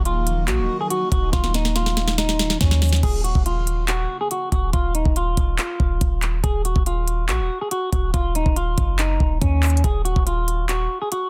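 A brooding, hard-hitting trap piece opens with a dark, clean semi-hollow electric guitar melody, coloured by lush chorus, delay and a low-pass filter, over an ethereal, airy pad with phaser and ensemble chorus that lingers in the background until 3.0 s. A deep, boomy 808-style bass and an up-front trap kit, with a knocking kick, sharp snare, crisp hi-hats, handclaps and crash, drive the half-time feel, with a drum fill running from 1.3 s to 3.0 s. The chords move through suspended and ninth colours, all held in a dense, heavily limited modern master.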